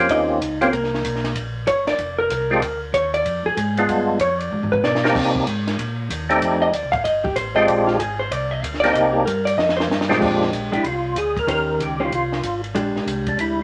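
Soul jazz organ trio in Bb mixolydian at a brisk 190 BPM, swinging and bluesy with a greasy feel, cut from a longer piece. A clean, compressed hollow-body jazz guitar sits up front and solos through the first 10.2 seconds over a fat, percussive tonewheel organ melody with chorus vibrato, key click and slow rotary speaker, while a round, mellow organ bass line holds the low end. A compact cocktail kit with a high-tuned snare, punchy kick and rolled-off top adds drum fills at 4.5 and 9.6 seconds, all set in a wet studio ambience as the chords move through Eb13, Bb13, Cm7 and F13.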